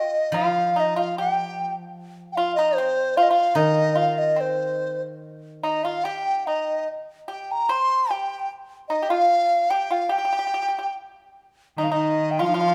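Graceful and wistful, this short cut from a longer piece for Chinese chamber ensemble moves at 74 BPM in 2/4 with a rubato feel. A hollow large dizi carries the melody up front, its bamboo tone airy and buzzing from the membrane, with vibrato, tongued notes and lifted highs. Beside it, a bright, dry pipa played with fingerpicks adds a percussive second line, while a steel-string zither rings with a silvery accompaniment from 0.3 to 6.1 seconds. At 11.8 seconds, as the opening section closes, a breathy, mellow low xiao enters distant and unsteady with a soft attack, alongside a rich, reedy cello whose gut-string, period-style bowing carries light vibrato. A moderate recital hall reverb gives the ensemble a natural sense of space.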